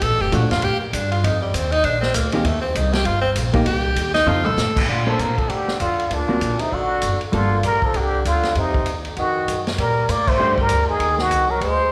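A breathy plunger-muted trumpet with wah-wah and vibrato takes the melody at 4.9 seconds, after a forceful, edgy tenor saxophone solo opens this relaxed, playful small-group swing and bop excerpt at 196 BPM in Bb major, over woody, growly pizzicato upright bass, a vintage drum kit with dark cymbals and a punchy kick that plays a fill just before the trumpet enters, and clean, compressed hollow-body guitar comping, with a band accent at 10.2 seconds and the whole group ringing in a reverberant recital hall.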